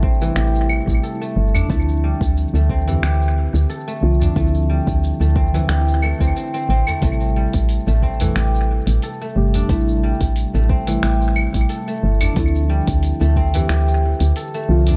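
A lightly swung 16th-note groove at 90 BPM in 4/4 sets a mystical, meditative mood for this organic downtempo piece in A minor. A deep, layered electronic kick drives it until 13.5 seconds, while a tape-tinged deep house kit of claves, finger snaps, hi-hat and shaker sits low in the mix with analog delay, and a very quiet, band-limited udu adds acoustic depth from 1.6 seconds. Up front, a woody, round FM bass with tube saturation and sidechain pumping anchors the low end. Above it, muted, felt-like synth keys with a dark, intimate tone play the accompaniment through chorus, sidechain pumping, analog delay and a filter sweep. A silvery, ringing guzheng played with fingerpicks spins arpeggios coloured by vintage 12-bit sampler grit and delay. The harmony moves between Am7 and Dm9 inside an echo-heavy digital ambience, in this section cut from a longer piece.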